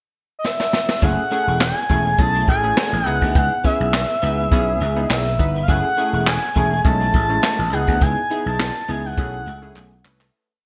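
A bright, 1980s-style digital production with a moderate plate reverb carries this funky, danceable early-eighties boogie funk piece: a jazz brush kit with a boomy kick, hi-hat and clap-layered snare in gated reverb opens with a fill at 0.4 s alongside a smooth, up-front portamento lead with chorus and vibrato playing motif-based call phrases; at 1.0 s a growly slap bass with a fat syncopated line and chromatic approach notes, detuned sawtooth polysynth chords with a filter sweep and chorus, and a slightly broken-up electric guitar with analog chorus playing choppy sixteenth notes in the background all join over minor-ninth and minor-seventh changes, before the whole piece fades out from 8.0 s.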